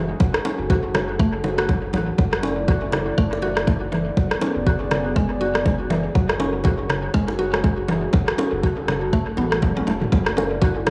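A swung 4/4 afro house groove rides on an up-front, deep electronic kick, a tape-warm deep house kit with rim clicks and toms, and tight, high-tuned bongos set back in the mix, with a brief touch of soft-handed congas at 10.1 seconds just after a drum fill. A woody, mallet-like FM pluck spins arpeggios through chorus and dub echo, while a smooth, dark analog pad holds sustained chords and a round sine sub bass anchors the low end, the three tonal parts pumping to the sidechain. Spring reverb and small room ambience give this earthy, echo-heavy passage a warm glow.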